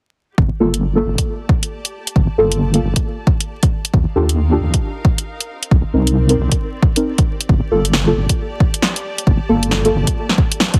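Heavily compressed, radio-like sound flecked with vinyl crackle frames this soulful, bouncy two-step garage excerpt with a swung feel: a tape-toned punchy kick and an analog drum machine's punchy snare and hi-hat sit up front in a small room, a deep, dark wobbling bass pumps with sidechain, mellow wave-folded chord stabs carry chorus, phaser and delay through Gm9, Ebmaj9#11 and Cm7, and a distant, smooth symphonic string section fades in from 0.4 seconds to the end at 10.8 seconds.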